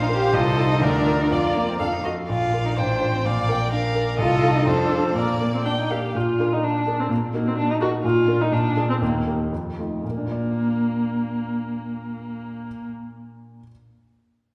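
A graceful, spirited classical-period piano quintet movement in Bb major and 2/4, taken from a longer piece at a quick 112-129 BPM with rubato: a rich-toned violin carries the expressive melody with vibrato and portamento while a second violin plays a smooth, even line and a warm, distant cello adds its own expressive line, until all three drop away by about 6.1 s, leaving the vibrato-laden viola and the clear, intimate grand piano (with audible action noise) to keep up the accompaniment through a broadening that begins at 7.6 s, the viola stopping at 12.9 s and the piano carrying on until its last sound at 13.7 s, everything heard from further back in a scoring stage's wet reverb.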